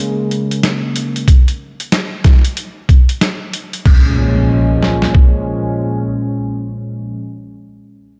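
In a light reverb, this short clip from a longer glitch hop piece swaggers funkily at 93 BPM in Bb minor, with a 62% swing on the 16ths. An up-front vintage analog pad holds sustained chords, smooth and warbling with detuned sawtooth and wave-folded tones, chorus and sidechain pumping. Two gritty, pitched-down boom bap sampler kits in studio reverb add up-front crash, hi-hat and snare from 0.3 seconds and a kick with a medium-tuned snare from 1.3 seconds, and an electronic impact arrives at 3.9 seconds as the pad returns to Bbm7.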